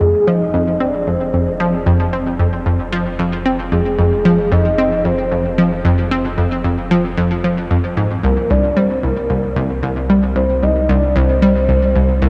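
Drenched in a huge, dark reverb with a muffled top end, this mysterious, expansive stretch of ambient, sequencer-driven space music moves at 113 BPM in F dorian, shifting from Fm7 to C7(no3) at 8.2 seconds. An up-front analog pluck with a bright, detuned edge and ring-modulated bite carries the riff through chorus and tape echo, while a soft octave-layered synth lead sings a full, vibrato-tinged melody behind it, colored by chorus, tremolo and tape echo. Underneath, a round sine sub bass fades in across the whole 12.3 seconds, adding deep, sustained weight.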